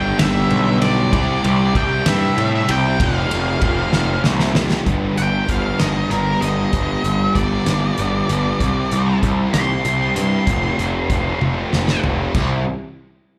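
Quiet-loud alternative rock in 6/8, restless and anthemic, heard as a live gig through a club PA with reverb, where a double-tracked fuzz guitar riff with slapback echo and a growly, overdriven fuzz bass sit up front beneath a dark octave-fuzz lead that takes a solo from 4.9 seconds, while a loose indie kit with a fat snare, punchy kick and pumping room sound drives drum fills into 4.9 and 12.3 seconds before this excerpt of a longer piece settles on a final C chord.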